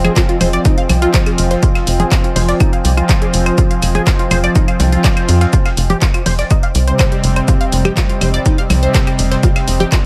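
A punchy, tape-warm electronic kick sits up front in this melancholic, cinematic melodic techno excerpt at 123 BPM in F minor, alongside a tight, driving sawtooth sequencer bass with tube saturation. Around them, detuned sequenced arpeggios with phaser and dub echo and bold, brassy analog pad stabs pump alongside a deep, moody ambient pad holding Fm7 and then Cm/F from 5.5 seconds. A layered techno kit of claves, handclaps, hi-hat and percussion blips, re-recorded in a large room, plays alongside a very quiet, gritty sampler-style kit with a fat snare, while a barely audible downlifter ends by 1.6 seconds.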